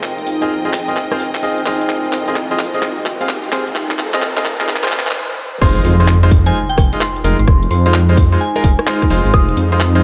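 A dreamy, reverb-soaked mix in a cathedral-like space carries this moody, bouncy two-step UK garage excerpt at 129 BPM in F minor, swung on the sixteenths and resting on Fm7. An ethereal, airy pad and a smooth studio string section sit in the background with sidechain pumping, while a deep, rumbling detuned saw bass, a garage kit with warm hats, handclaps, rim clicks and shaker, and brilliant grand piano stabs with tape echo and audible action noise drive a build-up marked by a drum fill, a background riser and a filter sweep. After a brief stop, the drop arrives at 5.6 seconds with a tight electronic kick, an impact, and a gentle, warbling FM bell melody coloured by chorus, phaser and analog delay.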